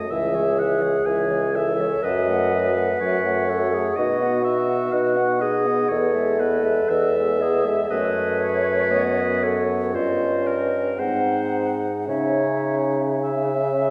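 Classical slow romantic movement for wind quintet in C# minor, melancholic and elegiac at 51-63 BPM with a rubato feel, where an airy silver concert flute carries the melody with vibrato from the background, a clear oboe sings a second line, a distant, roomy French horn and a smooth-topped clarinet supply accompaniment, and a close-miked bassoon plays the bass up front, all set in a wet scoring stage reverb heard from further back in the room, moving from C#m through Emaj7 and G#7 before settling again on C#m at 12.1 seconds in this excerpt cut from a longer piece.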